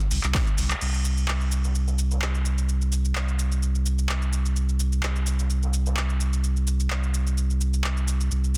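Acid house at 128 BPM with a light 16th-note swing, raw and gritty, built on a booming, dry analog drum machine with metallic hi-hats, handclaps, shaker and crash cymbal, a deep, thick sub bass at C2 pumping up front under sidechain, and a soft, distant brush kit of snare, hi-hat and tambourine sitting roomy in the background, with a drum fill from 0.3 to 0.8 seconds and a band accent at 0.7 seconds launching the main section, all in a dense, heavily limited mix cut from a longer piece.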